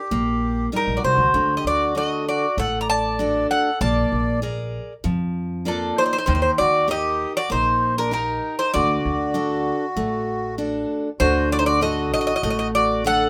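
The recording is set in a moderate small room with a short reverb. This brooding, moody Greek folk piece moves at 97 BPM in a straight 4/4, in D phrygian dominant, and is cut from a longer performance. Up front, the Greek bouzouki carries the melody with picked double strings that sound bright and metallic, some of them doubled at the octave. A picked dreadnought acoustic guitar, also up front and full-bodied, provides the accompaniment, while a reedy accordion with a slow beating quality plays a second line beneath. A woody, thumpy pizzicato upright bass on steel strings anchors the harmony as it moves through Eb, D and Bb7, and the music turns to a new section at 11.2 seconds.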